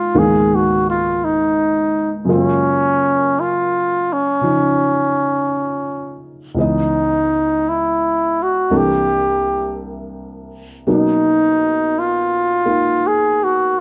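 A dark, lightly reverberant production frames this intimate, smoky swung jazz fragment in 4/4, where a breathy, mellow trumpet carries the solo melody with scooped notes and a smooth top, both it and a shadowy baby grand piano sitting up front, the piano's natural, short-sustained accompaniment moving through chords such as Db13 and Bmaj9 with its action noise clearly audible.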